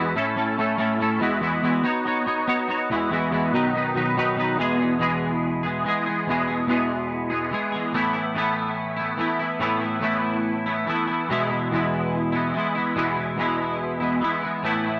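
A lone twangy electric guitar opens this rock excerpt, clean and compressed, with an ensemble chorus that gives its picked chords a jangly shimmer. It sits up front in a dry, close, 1970s-style studio sound touched by light reverb, moving at 143 BPM in a straight 4/4 in E major. The opening passage shifts quickly between A, Eadd9, Badd9 and B, and the added-ninth colours give the harmony a wistful lift. At 4.6 s the music settles into a slower-changing passage, resting on E before moving to Asus2 at 7.9 s and returning to E. Spanning E2 to C#5, the guitar fills both the low and high registers on its own, lending the piece a jangly, wistful mood.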